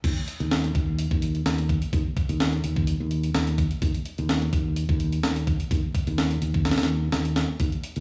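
A gritty, compressed sampler-style breakbeat kit with a thumpy kick, high-tuned snare, crash cymbal and hi-hat, each part high-pass filtered and touched with studio reverb, drives this energetic, swaggering breaks passage at 127 BPM with a light 16th-note swing, joined throughout the 8 seconds by an up-front, direct fingered electric bass reaching down to Eb2, all set in a dry small room with a bed of vinyl crackle, cut from a longer piece.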